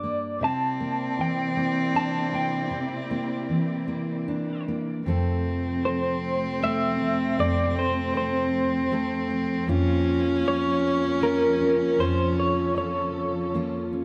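Acoustic folk-pop ballad in F major at 78 BPM in a straight 3/4, heartfelt and tender, cut from a longer piece. A full-bodied, fingerpicked jumbo steel-string acoustic guitar and a slightly broken-up, lo-fi electric guitar, its melody coloured by tremolo and plate reverb, sit up front from the start, while a smooth, close solo cello with light vibrato and tape echo joins at 0.4 s on a second line. A distant, expressive chamber string section holds sustained bowed chords beneath, and the whole is framed in a dark, warm production with moderate studio ambience, shifting to a new section at 5.1 s.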